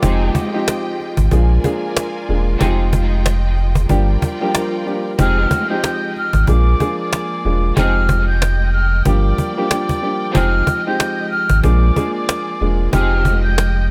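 Reflective and gritty, this boom-bap hip-hop excerpt sets a dark, mellow grand piano with audible action noise over a deep, round sub bass, a woody, dry cajon, lush bowed strings holding sustained chords alongside clear string stabs touched with tape echo, and an airy, distant flute melody with vibrato entering at 5.2 seconds.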